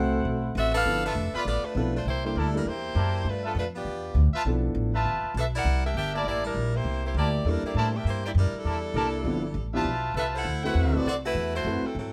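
A bright, up-front saxophone section carries the melody through this energetic big band swing passage in G major, taking over at 0.6 s after a brief opening phrase from a mellow, soft-attacked trumpet section and a warm trombone section on a second line. The tempo is a brisk 200 BPM in 4/4 with swung eighths, and the harmony moves through thirteenth chords, opening on a rootless D13 before shifting between G13 and C13. An upright bass plays pizzicato throughout, its steel strings giving a woody, thumpy tone that sits close to the front. A clear, tight trumpet section punctuates with stabs, smooth on top with light vibrato, while a concert grand piano with deep bass and a natural tone adds accompaniment in two stretches. Moderate studio reverb gives the band a sense of room, and the recording is cut from a longer piece.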